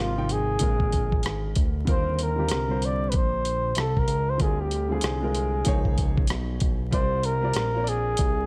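Mellow and smoky, this short jazz-hop cut from a longer hip hop piece moves at 95 BPM in 4/4 with a swung sixteenth feel, moving from Fm7 through Bb7, Eb6, Dm7b5 and Db9. A breathy flugelhorn carries the jazz-style solo melody up front with vibrato, soft attacks and scooped notes. A vintage grand piano with short sustain accompanies beneath it, and a fat, saturated analog bass with a nasal, detuned sawtooth edge sits up front. Compressed, pitched-down boom bap sampler drums enter at 0.3 seconds, with a thumpy kick, hi-hat and rim click carrying 12-bit grit, all set in a small room with vinyl crackle.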